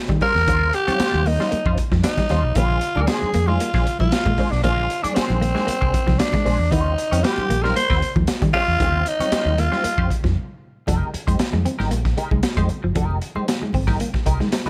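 This driving, sly funk excerpt opens with the full band at once: a crunchy breakbeat drum kit sitting up front with a punchy kick and saturated, gritty tone, a dark, round vintage muted fingered bass, and congas played with soft hands, ringing very quietly beneath. A clean electric guitar with wah and a scooped, compressed sound supplies accompaniment, while a hollow-bodied semi-hollow electric guitar carries the riff. From 0.2 s a raspy tenor saxophone takes the melody up front, its smooth top tempering the rasp, over chords moving from Eb13 to Bb9 and back. The saxophone stops at 10.1 s, a brief break arrives at 10.4 s, and the closing section settles on Fm11. The sound carries little reverb, and the clip is cut from a longer piece.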